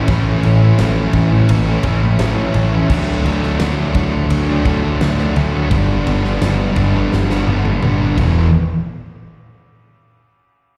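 Angsty and brooding, this excerpt of quiet-loud alternative rock in a straight 4/4 sets two thick, distorted fuzz guitars with slapback echo on a riff over A, D and G to an E5 chord, one bright and the other warm and set in the background. An overdriven fuzz bass sits up front with a direct-and-amped punch, while a big acoustic rock kit with a fat snare, punchy kick and crash and ride cymbals in a stone room plays a drum fill from 7.1 to 8.5 seconds. The whole performance sounds like a live gig heard through the venue's PA, with recital hall reverb and small room ambience.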